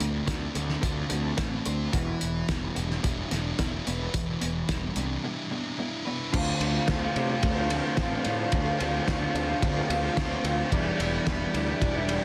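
A straight 4/4 groove from a cloth-damped, thuddy drum kit with a fat snare and muffled cymbals drives this moody, restless indie rock excerpt, where a slightly broken-up guitar through a small old amp with analog chorus and a thick fuzz guitar with tape echo play riffs over a punchy, overdriven picked bass, moving between Dm7 and Em7 until a silky, very quiet string machine with phaser enters at 7.3 seconds, all within a dense, heavily limited mix.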